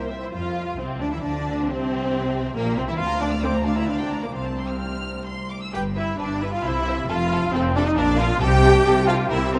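A 3/4 pulse at 134 BPM drives this quick classical-period movement for string orchestra, pushed and pulled by rubato, with a dramatic, restless mood and tuning set to A4 = 439 Hz. The first violins carry the melody from Bb3 up to F6 in a rich, focused tone with a lush, vibrato-laden sheen, while the second violins hold an even, close second line. The violas stand out most in the balance, sitting up front with an expressive accompaniment that still carries a faintly distant colour. Double basses anchor the bass with a smooth, bowed tone from the start, and the cellos join them at 0.3 s with a focused line. The harmony briefly drops away around 1.7 s, then moves through Bb/D, Gm7/D, G, C and F before settling on Fadd9/C, all bathed in a vast, echoing cathedral reverb in this passage cut from a longer piece.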